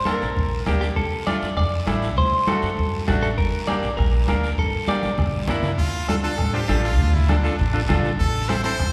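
Fiery and passionate, this cumbia moves at a brisk straight pace in 4/4, cut from a longer piece. A twangy, up-front clean electric guitar carries the melody with spring reverb until about 5.4 seconds, while a semi-hollow electric guitar, picked and clean, supplies accompaniment beneath it. The upright bass sits prominently with a woody, thumpy pizzicato tone, and the percussion blends ringing congas played with soft hands, a raspy guiro and a vintage, band-limited bombo tucked into the background. A drum fill leads into a new section at 5.8 seconds, where a brilliant, forceful trumpet takes a punchy, close-miked solo with vibrato. The whole ensemble sits in a lush, reverberant space like a church or concert hall, giving the dance groove a spacious glow.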